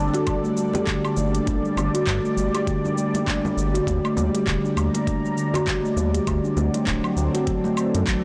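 A detuned sawtooth pad and a steel tongue drum open this meditative organic downtempo excerpt together, the pad holding smooth, soft-attacked chords with chorus and sidechain pumping while the tongue drum, struck with firm rubber mallets, rings out round, pure arpeggios up front through a delay. A deep, dark analog bass sits beneath from the start, its fast-attack, sustained tone shaped by wave-folding and transformer saturation and pumping against the beat. Just after, an electronic kit of handclaps, crisp hi-hats, shaker and woodblock settles into a gently swung groove in a small room, joined by very quiet, acoustic congas. A gritty, thumpy sampler-style kick enters at 0.3 seconds, compressed and overdriven. The harmony moves from Gsus2 to Ebmaj7 and then D7, and the whole mix is blown-out and overdriven, with light digital reverb around it.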